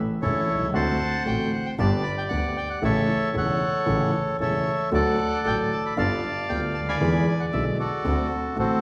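Nostalgic and passionate, this short tango fragment cut from a longer piece moves at a rubato 115 BPM in D major, with a reedy, dark bandoneon singing the melody up front over a warm concert grand piano whose audible action noise and long sustain color the accompaniment, while a clear, bowed double bass adds an earthy, nasal bite beneath, all sounding from 0.2 to 8.8 seconds in the wet reverb of a recital hall.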